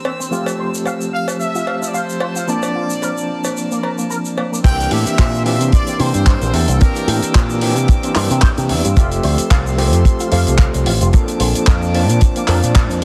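A sunny, groovy nu-disco cut in C mixolydian at 111 BPM, with a light swing on the sixteenths, opens with a brilliant, punchy trumpet section carrying the melody over a barky, overdriven tine electric piano that shudders with fast tremolo, sidechain pumping and slapback echo. Beneath them, a rich chamber string section with a reedy, gut-string tone holds sustained chords in the background, while a twangy electric guitar with an envelope filter picks a clean riff through chorus and a low-pass filter. A saturated cowbell adds percussion until about 4.5 seconds, and a damped 70s drum kit with dark cymbals, hi-hat, shaker, handclaps and crash keeps time from 0.2 seconds. At 4.6 seconds the drop arrives as the harmony moves from Fmaj7 and Bbmaj7 to C7, bringing in a tight, dry kick drum up front and a punchy, up-front picked electric bass with an envelope filter. The trumpets stop at 7.3 seconds, and the electric piano, strings, guitar, bass and drums ride the groove through the return of Fmaj7 and Bbmaj7. 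The whole fragment sits in a heavily compressed, radio-like sound with studio ambience.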